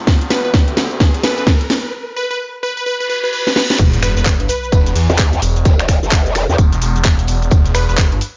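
A swung 16th-note groove at 129 BPM in 4/4 drives this gritty, aggressive bass house excerpt in E minor, with a tight, up-front electronic kick and a garage kit of cracking snare, bright hats, claps, snaps, shaker and crash running throughout, while a muffled, lo-fi vintage kit with tambourine sits very quietly underneath from 3.8 s. Over an Esus2 build-up with a background riser, reverse cymbal and sub drop, a swirling, thick detuned saw bass with phaser, overdrive and sidechain pumping holds the low end as a punchy, catchy plucky unison lead rings out on B4 through phaser and dub echo. At the drop at 3.8 s, the harmony falls away, and a growling, wobbling growl bass with chorus bursts in from 5.1 s to 6.6 s, all set in a small room with light reverb and nothing above 7.5 kHz.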